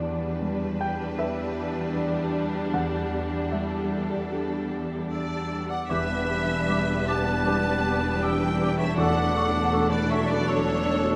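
A lush violin section sings the melody with vibrato in this longing, sorrowful cinematic piece in E dorian at a rubato 78 BPM, joined by a smooth second violin line, expressive portamento violas, a natural-toned grand piano and a focused cello bass, before a distant, mellow oboe enters at 5.1 s and, from 5.9 s, airy, hollow flutes, a very quiet clarinet, dark, soft-attack French horns holding chords and background double basses fill out the texture in a wet scoring-stage reverb.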